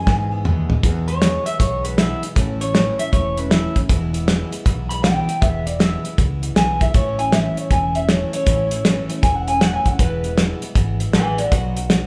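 Retro and rollicking, this rockabilly excerpt swings at 157 BPM in 4/4 in E major, with the band heard playing live together in one large studio room with a moderate reverb. A cloth-damped drum kit plays a short fill from 0.1 seconds, then sits up front with a fat snare, tight kick, hi-hat and toms, its thuddy sound rolled off at the top. An electric guitar through a small old amp carries the melody, bright, twangy and slightly broken-up. Beneath it, a picked steel-string acoustic guitar plays a full-bodied dreadnought accompaniment, while a mellow fretless electric bass adds a dark, round and punchy low end. The chords move between E and A before landing on B near the close at 11.5 seconds, as the cut ends mid-flow around 12.1 seconds.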